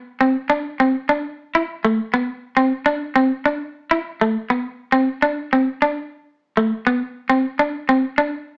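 A clean, bright semi-hollow electric guitar takes the solo from 0.2 seconds, picking a short highlife phrase in the middle register with a gently swung sixteenth-note feel and a sunny, warm mood. The compressed hollow-body tone sits up front in a moderate studio reverb, with the live-room, small-speaker sound of a band recording, and the guitar stops at 8.3 seconds in this brief cut from a longer piece.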